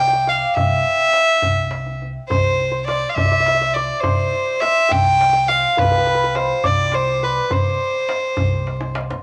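A reedy, gut-string violin carries the melody up front over a shimmering, hammered santur line, a woody pizzicato upright bass holding a low C and a tight, saturated tombak that enters at 0.6 s and closes with a fill at 8.7 s, giving this hypnotic, soulful Persian modal excerpt in 6/8 a moderate club reverb and a layer of vinyl crackle.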